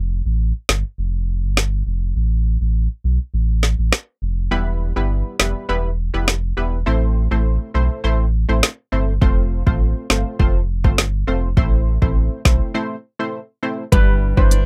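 A straight 4/4 dancehall groove at 102 BPM in A minor sets a hypnotic, sultry mood in this short cut from a longer piece. A deep, sine-toned sub bass with octave opens at 0.0 s and sits up front. The electronic afro-pop drum kit enters at 0.7 s with a deep kick, woody snare, rim click and smooth hi-hats, its overdriven sound pushed forward. At 4.5 s a punchy chord stab arrives, detuned sawtooth and square waves with a sub octave, filter pluck and chorus, giving a bright, decaying attack over chords moving through Em, Am and F. Near the end, at 13.9 s, a metallic, shimmering steel pan played with hard rubber sticks adds a brief close-miked melody, alongside small, fingerpicked nylon-string guitar arpeggios, as the harmony lands on G6. The mix is dry, with little reverb.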